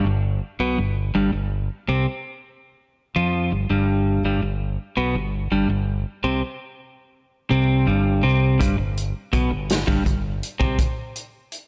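A bright, clean twelve-string electric guitar leads this jangly, upbeat indie rock excerpt, playing a compressed, up-front riff with a vibrato effect over a G major chord at 55 BPM in a straight 6/8. A growling, overdriven fingered electric bass runs beneath it until 10.8 seconds. A vintage drum kit with hi-hat, a punchy kick and a medium-tuned snare enters at 8.6 seconds in a small, natural-sounding room, all under light reverb.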